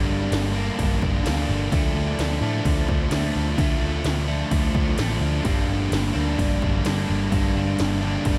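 An overdriven, double-tracked electric guitar riff with subtle chorus sits up front over a dark, round, foam-muted picked bass from the start, joined at 0.2 seconds by analog 80s electronic pad drums with a punchy kick, gated snare and crash cymbal, in this brooding, dreamy shoegaze and dream pop excerpt at 128 BPM in G minor, moving from Gm to Dm and back, all soaked in a huge ambient reverb.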